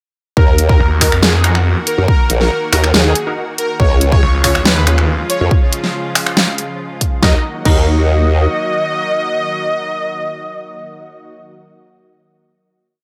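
Chaotic and menacing, this short heavy wobble dubstep piece opens straight into a half-time drop, where a punchy electronic kick and a dubstep kit with a huge snare, snaps, hi-hats and crash sit up front beneath a formant-sweep wobble bass with changing wobble speed and a snarling, distorted saw bass playing chopped phrases that answer it until 5.2 seconds. Above them a smooth, airy supersaw repeats a riff melody through digital delay, a lush unison pad holds chorused chords with sidechain pumping, and bold orchestra-hit-like stabs echo sparsely in the background with a cassette-tape tint. The drums and wobble bass drop out by 8.5 seconds, leaving the supersaw, pad and stabs to ring out on a final chord from 7.2 seconds in light reverb.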